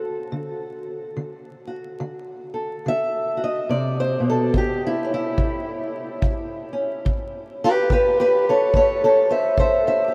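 A slow 4/4 pulse at 71 BPM carries a light swing on the eighth notes, giving this short acoustic country blues excerpt in A mixolydian a swaggering, gritty strut. A fingerpicked acoustic archtop guitar sits up front and carries the melody throughout, ranging from A2 to E5 with a dark, woody, boxy tone and the dull bite of old strings. The guitar plays alone over a D chord until a punchy kick drum, recorded in a small room with brushes, enters at 4.5 s as the harmony moves to A7, and the kick stops at 9.8 s. The whole piece sits in a vast, echoing space soaked in a huge ambient reverb, with vinyl crackle adding a dusty, aged surface to the sound.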